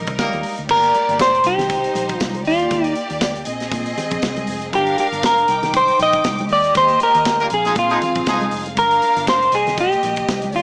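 Disco with a joyful, danceable swing, this brief excerpt puts a dark, clean semi-hollow electric guitar up front carrying the melody through tape echo, while a lush, bowed string section adds a second line and a round, foam-muted fingered bass sits low beneath polished drums with bright cymbals and a punchy kick. Bright congas in the background and a very quiet, jingly tambourine keep the groove moving over jazzy seventh and ninth chords. A vintage-toned horn section in octave doubling punches in with stabs at 0.2 seconds and again at 7.4 seconds, marking the band accents, all heard through moderate studio reverb and a small-speaker sound.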